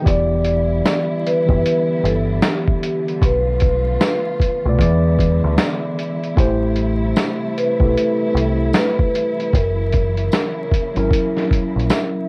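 This hazy, nostalgic lo-fi hip hop clip in E minor opens at 0.0 s with a mellow tine electric piano, sounding through built-in speakers with cassette tape coloring, alongside a studio string section holding bowed chords with vibrato, portamento and plate reverb. At 0.1 s a vibraphone with soft mallets takes the melody, its metallic ringing tone carrying a slow motor vibrato and a boxy small-room quality, while a deep dub picked electric bass, dark and round with transformer saturation, sits up front. A compressed sampler-style drum kit with a thumpy kick, medium-tuned snare and hi-hat keeps a swung 4/4 at 76 BPM, muffled and re-recorded in a small room. A jingly tambourine joins at 0.9 s, distant in the background of a large room. The harmony moves from Em7 through Bm7b5, E7 and Am7 to F#7, all wrapped in worn, warbling old tape, vinyl crackle and pitch drift.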